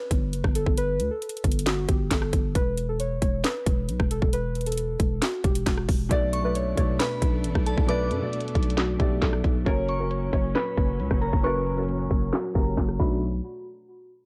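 A trap drum kit with a hard-clipped kick, a sharp snare, metallic hats, handclaps and rim clicks sits up front in this menacing, eerie half-time hip hop excerpt, joined by a growling, buzzy 808-style bass and muted felt-like synth keys carrying the melody through chorus and tape echo, until at 6.1 seconds a dark, boxy baby grand piano and lush bowed strings in the background enter, followed at 6.3 seconds by a crystalline FM synth bell, as a filter sweep moves through the second half.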